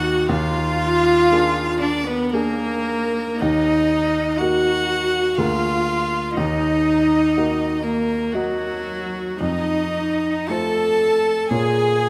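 An up-front viola, bowed sul tasto with an airy, softly attacked tone and light vibrato, carries an intimate accompaniment in this yearning, elegiac excerpt from a slow romantic movement for piano quartet in 3/4 with flexible rubato, while a rich violin sings the melody, a cello in the background traces a second line, and a natural-sounding grand piano with audible action noise accompanies, all within a moderate recital hall reverb.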